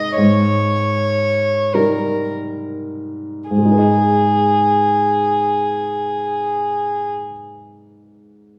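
This classical fragment is a slow, rubato romantic movement for piano quintet in G# minor and 6/8, drifting at roughly 32-40 dotted-quarter beats per minute with a melancholic, elegiac mood. A single violin, rich and pure with a soft-attacked, floating sul tasto tone, carries the melody over a clear, polished baby grand accompaniment, easing from a D#7/G# chord as the tempo slows into a G#m arrival at 3.5 seconds. The violin falls away at 7.0 seconds and the piano continues alone to 8.6 seconds, both set in a reverberant recital hall that sounds heard from further back in the room.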